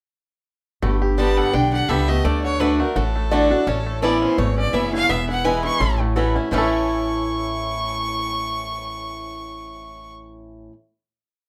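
A driving, lively bluegrass piece with a light swing, led up front by a clear, boxy fiddle that carries a fiddle tune in running eighth notes with light vibrato and a slapback echo, entering at 1.2 seconds. Beneath it, a woody, thumpy upright bass plays a two-beat root-and-fifth line with walk-ups, a bright picked swing-style acoustic guitar alternates bass notes and strums, and in the background a twangy banjo rolls out three-finger arpeggios while a nasal, metallic lap resonator guitar adds a slide counter-melody. The rough home-demo mix sits in a wet studio reverb, and the whole piece moves through a short passage before settling on a final chord from 6.5 seconds.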